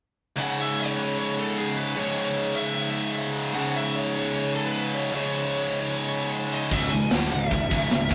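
Epic and aggressive, this heavy metal passage drives at 151 BPM in C# minor, cut from a longer piece. A dark, high-gain lead guitar carries the melody through digital delay above a bright, double-tracked rhythm guitar riffing low and up front. At 6.7 seconds a growly, fuzz-laden picked bass and a tight, polished drum kit with bright cymbals enter on a C# minor chord, all inside a stone room's rough rehearsal-room sound with warm saturation.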